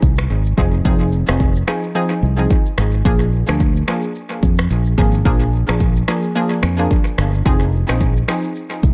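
Smooth and sultry, this short excerpt from a longer afrobeats piece moves at 109 BPM in 4/4 with a 16th-note swing, set in F dorian. A fingered electric bass, dark, round and punchy with a direct, amped tone, sits up front from the opening and spans F1 to F2. An electronic, produced afro-pop drum kit plays throughout, with a deep kick, finger snaps, rim clicks and shaker touched by tape echo. At 0.6 seconds an analog pluck enters as accompaniment, a vintage, warbling synth voice blending sawtooth, square and triangle waves with a fast attack and decaying filter pluck, coloured by chorus and tape echo between F3 and Ab4. The harmony moves from Fm7 to Bb7 at 3.1 seconds and returns to Fm7 at 7.5 seconds, all in a dry, echo-heavy mix with little reverb.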